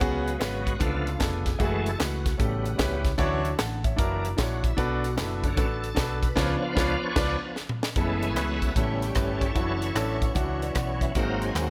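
Opening on a full band at once, this fervent, solemn uptempo gospel fragment in F# minor swings at 151 BPM, with a bright, shouting tonewheel organ soloing over slow rotary and chorus vibrato, an intimate grand piano with audible action noise, a round hollow-body bass, a crisp fusion kit with a punchy kick and high-tuned snare, and very quiet dry tambourine and handclaps, all under light reverb, before a band accent, a drum fill and then smooth background strings entering at 8.0 seconds over rich jazz-tinged chords.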